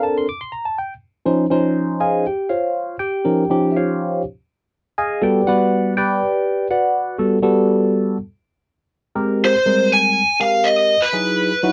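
Captured in a moderate booth ambience, this bright, soaring jazz fragment from a longer piece opens with a barky, clean tine electric piano through a combo amp, treated with phaser and placed up front as it lays down major-ninth chords, until at 9.5 seconds a warm, picked, overdriven lead guitar through a small cranked amp, carrying slapback echo and also up front, takes the melody through to the close at 11.7 seconds.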